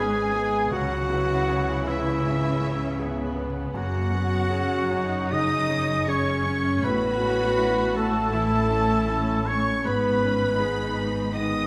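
A sorrowful, bittersweet cinematic passage at 79 BPM in a rubato 4/4 opens with a lush violin section carrying the melody, while a second violin section, an airy flute section, a punchy solo oboe and a distant, dark clarinet play second lines. A shadowy French horn section holds sustained chords, with a clear concert grand piano, a smooth viola section and a very quiet, ringing harp adding accompaniment and arpeggios over a bass of expressive cellos with portamento and even double basses. The harmony moves from G#m through C#m7, F#sus2 and A back to G#m, all set in a wet recital hall reverb, and the clip is cut from a longer piece.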